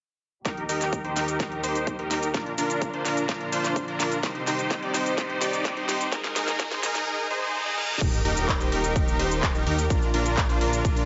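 Set in a moderate digital hall ambience with a dulled top end, this uplifting, anthemic festival progressive house clip builds for its first 8.0 seconds under filter sweeps, a drum fill and a very quiet riser, reverse cymbal and sub drop, as a huge, gritty, sidechain-pumped supersaw plays a riff and bright, earthy chamber strings hold sustained chords over a punchy, tape-warm electronic kick and a pop kit of fat snare, metallic hats, handclaps, shaker and cymbals, until the drop at 8.0 seconds brings in a thick, menacing detuned saw bass with an impact.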